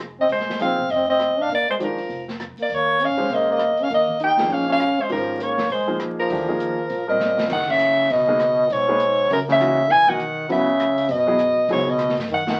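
Spiritual and searching, this swinging modal jazz fragment sets an up-front, forceful soprano saxophone with light vibrato against a brilliant, scooped trombone second line, over intimate piano accompaniment with audible action noise, a woody pizzicato upright bass deep in the background and a dark, boomy small-room drum kit whose fill at 7.2 s leads into a new section at 7.5 s, all heard through wet studio reverb and the crackle of a very old 78 rpm record.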